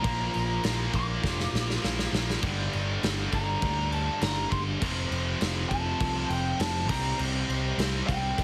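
Menacing and aggressive, this short hard rock passage in G minor drives at 101 BPM in a straight 4/4, cut from a longer piece. A lead guitar through a small cranked amp carries the melody high above, its overdriven tone warm and lo-fi, while two double-tracked rhythm guitars pound out the riff beneath: one bright and overdriven, the other scooped and high-gain with heavy distortion. A picked electric bass adds a growly, punchy low end, and a big acoustic rock kit sits up front with a punchy kick, a medium-tuned snare and crash cymbal, its sound shaped by a bright stone room. The drums break into a fill from 1.2 to 2.4 seconds, and the chords move from Bb to Gm, F and finally C5 at 6.9 seconds. The mix is dry and squeezed into a dense, heavily compressed radio sound.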